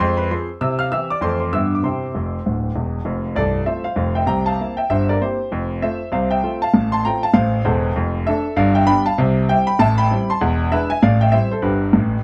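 A clear, worn concert grand piano with deep bass and short sustain sits up front as the lone voice in this swinging, exuberant stride jazz excerpt, moving from C major into F major at 3.1 s, with a fill from 2.1 s and chords running from Fm through C7 and G7 changes to Am7 and G, all framed by a moderate studio ambience and a dark, warm production.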